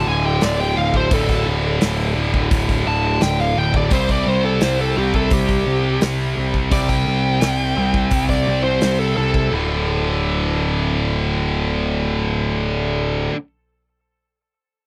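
A dark, high-gain lead guitar with tape echo plays a solo from the opening until 9.5 seconds, riding over an epic, heavy metal groove in straight 4/4. Beneath it, a bright, distorted rhythm guitar and an overdriven guitar in the background play a low riff moving from D5 to C5. A fuzzed, punchy picked bass sits up front, and a polished acoustic drum kit with hi-hat, snare and kick enters at 0.4 seconds and stops with the lead, leaving the guitars and bass to carry the riff alone in a dry, close 1970s-style studio sound.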